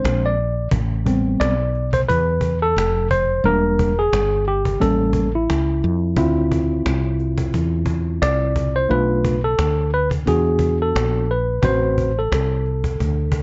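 A worn, slightly out-of-tune tine electric piano, lightly overdriven and up front, opens this smoky, nocturnal jazz-hop fragment over a woody, round, punchy fretless electric bass, joined at 0.1 seconds by a snappy cajon with snares, then takes a solo from 0.7 seconds over a swung groove and jazzy minor chords such as Am9, Em7b5 and A7b9, all in a dark, dry mix.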